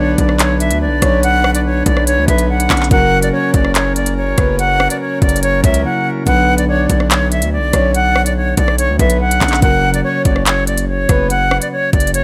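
A half-time drill groove drives this tense, menacing hip hop excerpt: the electronic drum kit enters at 0.2 seconds with a knocking kick, crisp hi-hats, handclaps and rim clicks sitting up front, while a distorted 808-style bass hits with a fast attack, saturated and heavy beneath it. Over the top, a bright, reedy silver concert flute carries the melody with vibrato and a soft attack, its airy tone trailed by tape echo. A breathy, flute-like synth lead sits in the background as a second line, its soft, sustained tone thickened by chorus and tape echo. A clean tine electric piano plays accompaniment through its built-in speakers, and a pipe organ on a nasal cornet solo stop holds romantic chords until 6.2 seconds. The harmony moves between Bmadd9 and F#, with a brief break at 5.8 seconds before the same section repeats, all set in light reverb and digital ambience.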